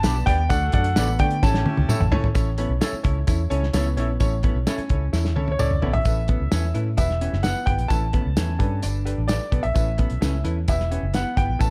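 A round, punchy muted electric bass sits up front in this short cut from an uptempo 1960s-style soul piece, moving at 130 BPM in a straight 4/4 in A mixolydian with a danceable, uplifting mood. Beside it, a cloth-damped, thuddy drum kit with a tight kick, a medium-tuned snare and a rolled-off top drives hi-hat, snare, kick and toms, adding fills that lead into each new section, while a close, jingly tambourine plays throughout. A baby grand piano carries the melody with an intimate, natural tone, long sustain and audible action noise, dropping out after 2.1 seconds and returning at 5.5 seconds. A worn concert grand piano with deep bass and short sustain plays accompaniment throughout and adds its own fill just before the last section. In the background, a distant, roomy horn section plays a tight jazz-style second line only in the opening seconds, a clean hollow-body jazz guitar repeats a picked riff, and a slightly broken-up, lo-fi guitar through a small old amp adds stabs until 5.9 seconds. 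The production is dark and warm with light small-room reverb, and the harmony moves from G, D and A into a closing stretch built on Aadd9, Em and Gadd9.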